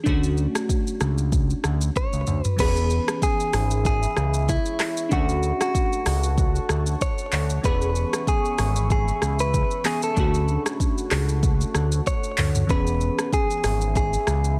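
Joyful and breezy, this afrobeats excerpt moves at 95 BPM in 4/4 with a gentle swing on the sixteenths, sitting in E mixolydian as the harmony alternates between Dmaj7 and E6. Glassy digital keys open the cut with chorused, detuned chords that decay, and almost at once a fat analog bass joins, thick and sawtooth-edged with a filter sweep and moving notch, sitting up front alongside an electronic afro-pop drum kit built from a deep kick, metallic hats, handclaps, rim clicks, shaker, toms and crash cymbal. At 2.0 seconds a clean electric guitar recorded direct takes the melody, its picked, compressed tone carrying a touch of delay. A deep, dark ambient pad slips in behind at 3.4 seconds, warbling and vintage in character, with a slow attack, long release, chorus and its own built-in reverb keeping it in the background. The overall sound stays dry and close, with the bass, drums and guitar placed prominently.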